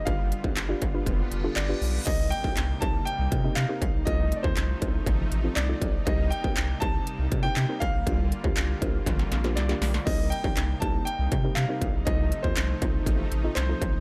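A clear grand piano melody with delay opens this driving, bittersweet dance-pop excerpt in C dorian at 120 BPM, over smooth detuned supersaw chords and a deep round analog bass, while a gentle chorused pluck sits in the background, all three of these pumping with sidechain, beneath an up-front industrial drum kit of distorted kick, clanging snare, crisp hats, handclaps and crash, as a very quiet reverse cymbal leads into an impact at 2.1 s and a drum fill arrives at 9.1 s.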